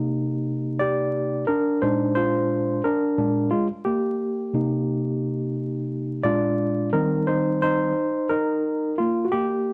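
Relaxed, cool hip hop with a swung sixteenth-note feel, this brief fragment features a worn, slightly out-of-tune tine electric piano playing alone, clean and up front as if through its built-in speakers, moving through Cm9, Bb9, Cm7 and Bb7 before settling on Eb6 at 6.9 seconds, all set in a moderate echo-chamber ambience with a bed of vinyl crackle.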